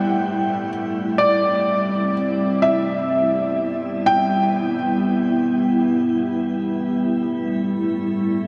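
A soft, felt-muted upright piano with audible action noise carries a brief, intimate melody through shimmer reverb and delay until 4.8 seconds, while a glassy, dark FM pad with ensemble chorus and a slow attack holds sustained chords moving between Em and C, giving this playful yet wistful IDM excerpt a dreamy mix soaked in huge ambient reverb.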